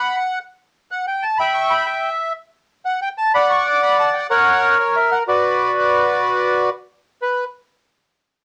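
Rubato and loosely anchored around 124 BPM in 4/4, this dramatic, passionate tango fragment in B minor, cut from a longer piece, features a lone bandoneon, reedy, dark and airy, placed up front, that spans F#4 to D6 through chords moving from B5 and Em to D6, F# and Bm before it stops at 7.4 seconds, all carrying the grain of a cassette home recording in light reverb.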